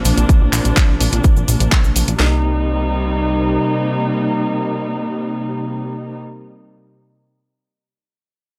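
A punchy kick and cracking snare lead this driving, dreamy progressive house fragment, with layered electronic house kits of handclaps and sidechain-pumped hi-hats beside a grainy cabasa in the background, a plucky, funky, wave-folded analog bass pumping beneath, and a dark, woody, lush string section holding sustained chords up front over Bbadd9 moving to Cm7, with the drums dropping out at 2.3 s, the bass stopping at 3.6 s and the strings ringing on alone in a digital ambience until 6.2 s.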